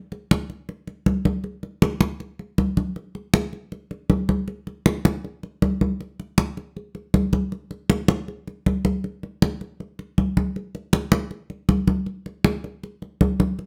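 Congas carry this brief Latin passage on their own, sounding from 0.1 seconds through to 13.7 seconds as the sole instrument. Their thick skins are medium-tuned and give an acoustic, warm tone that sits close, dry and up front in the mix. The tempo is a brisk 158 BPM in 4/4 with a straight feel, keeping the mood danceable while carrying a nostalgic air. A moderate studio reverb adds a modest sense of room around the whole. Cut from a longer piece, the passage stays within a single section from start to finish.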